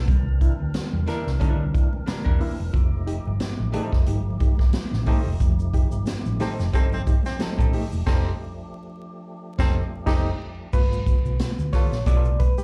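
A swung sixteenth-note funk groove in 4/4 rides on an up-front big-band drum kit with a punchy kick and high-tuned snare, a dark, round hollow-body bass, and very quiet bright congas, all heard as a live gig through a club PA with vinyl crackle. A fat, lightly overdriven tonewheel organ with key click and slow rotary speaker holds sustained ninth chords, a clean picked archtop guitar adds accompaniment, barky reed electric piano stabs with fast tremolo drive the energetic mood, and a grainy tube shaker slips into the background at 5.4 seconds. A clear baritone saxophone with scooped notes carries a second line from 6.4 seconds into a band accent, and the gritty reed electric piano takes a brief solo at 10.7 seconds before this funky excerpt cuts off.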